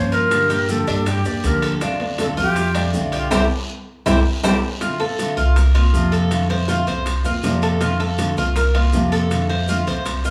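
A straight four-beat Cuban son and guajira groove sets a relaxed, sunny mood, carried by a woody, up-front pizzicato upright bass, a fingerpicked nylon-string guitar and the metallic double-string arpeggios of a Cuban tres, while raspy guiro, grainy maracas and ringing timbales sit in the background and round, low-tuned bongos stay very quiet. A breathy, hollow jazz flute with vibrato carries the melody until 4.6 seconds, and a drum fill and band accent from 3.3 seconds close the opening section. The second half alternates between F6 and C7sus4 chords, with the band heard playing live in a small room and moderate studio reverb, in a passage cut from a longer piece.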